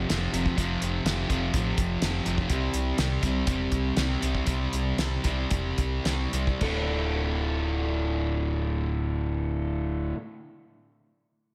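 Brooding and gritty, this classic rock excerpt in D minor moves at 105-125 BPM and slows down from 2.5 to 6.6 seconds, with a bright, up-front distorted electric guitar with slapback echo and a sludgy overdriven guitar playing riffs over round, amped fingered bass and a cloth-damped, thuddy drum kit with a fat snare and dark cymbals that stops at 6.7 seconds, as a slightly broken-up slide guitar with slapback and tape echo enters in the background at 6.6 seconds over a big arena sound.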